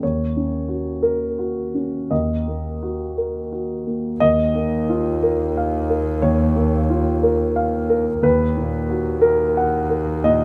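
Set in a moderate scoring-stage reverb, this brief, reflective and longing neoclassical excerpt for piano and strings drifts at a rubato 59 BPM in 4/4, with a dark, mellow, up-front concert grand with deep bass and short sustain accompanying over Gb/Eb, Ebm and Bbm/Eb harmonies before a single intimate double bass enters at 4.2 seconds, bowed sul tasto with a soft attack, airy bow and light vibrato to hold a rich low Eb beneath it.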